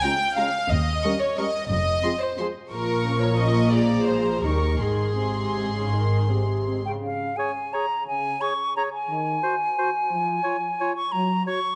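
An airy, up-front concert flute takes over at 6.9 s in this sweeping, festive classical piece in a flexible rubato 3/4. It is joined at 7.4 s by a solo oboe and a vintage-toned clarinet, after the opening has been carried by floating, softly bowed sul tasto violin sections on melody and second line, woody dark violas and double basses with vibrato, and rich cellos, all alongside a mellow, tight French horn section holding chords until 11.4 s, everything glowing in moderate concert hall reverb.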